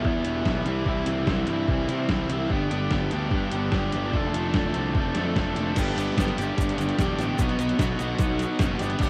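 A home cassette recording with light reverb carries this jangly, upbeat indie rock clip, where a dark, biting overdriven guitar riff sits up front over a second overdriven guitar in the background with subtle chorus and analog delay, a round, punchy fuzz bass, and a detuned 8-bit drum machine with a thumpy kick and vintage sampler grit, while a grainy tube shaker joins at 5.8 s as the chords turn to G and B.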